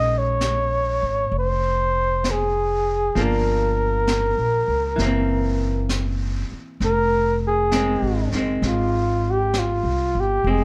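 A mellow flugelhorn carries the melody up front in this wistful, smoky jazz ballad, its light vibrato and scooped notes ringing through a plate reverb as it moves between F4 and Eb5. Set in F minor at a slow 66 BPM in 4/4 with a gentle swing, the short passage moves through Bbm11, Gm7, Gb7#11 and Fm7. A woody, thumpy upright bass with gut strings also sits up front, plucked low in its register, while a clean, hollow-body archtop guitar adds dark picked accompaniment. A brushed drum kit joins at 0.4 seconds, its high-tuned snare and hi-hat softened by a rolled-off top and kept low in the mix. The whole sits in a moderate studio room with a dark, warm production, and it is cut from a longer piece.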